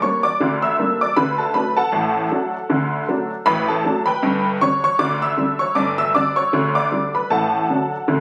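A jaunty, lively ragtime piano snippet cut from a longer piece, in D major at 78 BPM in a swung 2/4, where a solo honky-tonk upright piano, detuned, jangly and vintage, sits bright and up front across a span from G1 to E6, moving through Gm, D, G and D/A within about 8.2 seconds, captured on a phone in a club with moderate studio reverb and the murmur of the room around it.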